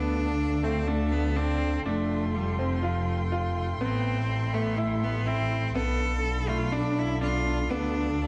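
Piano and strings electronica at 123 BPM in a straight 4/4, moving and cinematic, this brief excerpt moves through Dm, Fadd9, Am7 and Bm7b5 as a biting, up-front solo cello sings the melody with vibrato and delay, a clear baby grand piano with audible action noise and long sustain plays a delayed riff, a veiled, con sordino string quartet holds sustained chords, and a muted double bass section with soft attack and tube saturation anchors the bass, all set in a small room with light reverb and a dark production.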